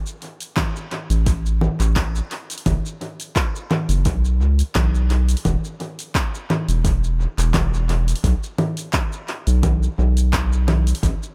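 A dry, echo-heavy mix carries this relaxed sunset chillout excerpt at 86 BPM in 4/4 with a 16th-note swing, where an up-front deep house kit of congas, handclaps, hi-hat and shaker, bathed in tape echo and re-recorded in a small room, opens at 0.1 seconds, a deep layered electronic kick joins at 0.6 seconds, and a round, nasal, dark analog bass with a fast attack and sustained tone sits up front from 1.1 seconds, ranging from E1 to C#2.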